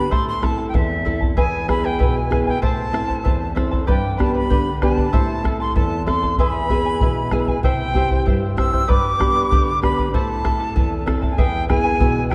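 Andean folk in an earthy, melancholic mood, this cut from a longer piece features a breathy, reedy quena carrying the vibrato-laden melody up front over fingerpicked accompaniment from a shimmering double-strung charango and a bright classical nylon-string guitar, while a deep, close bombo anchors the ensemble in a dark production bathed in concert-hall reverb.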